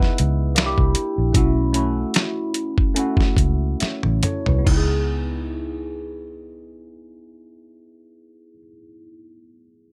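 A smooth, introspective neo-soul R&B excerpt in C# minor, around 68-78 BPM with a light swing, opens with three up-front parts together: a worn, barky tine electric piano through a phaser, a dark, round, foam-muted fingered electric bass, and a gritty, compressed sampler-style drum kit with thumpy kick, medium-tuned snare, hi-hat, toms, finger snaps and crash. The harmony moves from C#m9 through C9 to B9sus4 as the tempo eases down through the opening section, capped by a drum fill. The drums stop at 4.9 seconds, leaving bass and the slightly out-of-tune electric piano over a return to C#m9. The bass drops out at 8.6 seconds and the piano carries on alone to 9.9 seconds in a dry sound.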